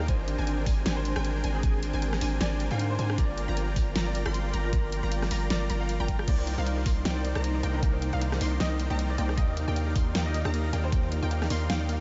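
A deep, long sine 808-style bass with a fast attack sits up front, pumping against a knocking, tape-warm electronic kick, while a huge, thick, detuned supersaw riff carries this bittersweet, lush future bass excerpt at 155 BPM in half-time with a light swing, moving through Abmaj9#11, Gm7, Cm9 and Ebmaj9 in C minor. A dubstep kit with a huge snare and bright hats drives underneath; a clear, intimate grand piano melody with audible action noise, chorus and tape echo sits in the background beside a punchy, ring-modulated pluck arpeggio with analog delay and a very quiet, ethereal airy pad. A second, wave-folded pluck joins at 6.3 seconds, and the whole dreamy mix is soaked in a huge ambient reverb with its top end softly rolled off.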